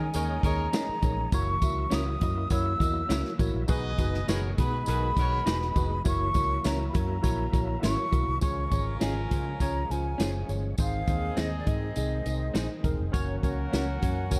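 A breathy jazz flute with vibrato carries the melody over a tight, clear horn section with slapback echo, a worn tine electric piano with lush chorus and a gritty tonewheel organ on slow rotary speaker, all set in motion from the first moment of this uptempo 1960s-style soul excerpt at 102 BPM. A round, foam-muted fingered bass and a punchy big-band drum kit drive a straight 4/4 feel, joined by a distant jingly tambourine, with twangy guitar stabs from a small old amp entering at 0.7 seconds. The mood is warm and uplifting in a dark, small-room production, settling into Db major at 8.4 seconds.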